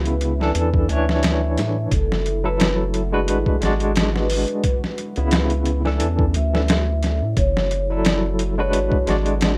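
A barky tine electric piano, lightly overdriven through a combo amp with tremolo, carries the chords up front in this brooding, melancholic trip hop fragment cut from a longer piece, over a gritty, pitched-down sampler-style drum kit with a thumpy kick and a round, deep analog bass. A mellow vibraphone played with soft mallets carries the melody from 0.9 to 9.0 seconds, ringing through tape echo, while a very quiet, dark ambient pad holds sustained chords beneath. The rough home demo mix has little reverb and a swung, unhurried groove that cycles through minor-seventh and suspended harmonies.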